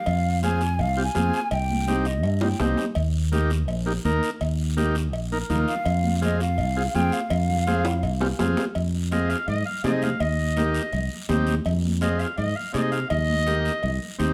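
A straight 4/4 cumbia groove at 166 BPM drives this passionate, danceable Latin excerpt in F minor, with the round, up-front fingered electric bass and the percussion starting together at 0.1 seconds and running to the end. Bright, high-tuned congas sit distant in the background, while ringing cowbell and timbales and a raspy guiro sound close and dry, and drum fills break in at 2.4 and 7.8 seconds. A vintage, buzzy combo organ carries the accompaniment from 0.4 seconds, clean and forward in the mix. A breathy concert flute with vibrato and lifted highs plays an expressive solo in two phrases over the first half, moving through Fm, Cm and Eb. At 9.1 seconds a classical-style clarinet takes over the melody, distant and roomy with plate reverb yet up front, over a cycling Ab, Eb, Cm and Fm progression.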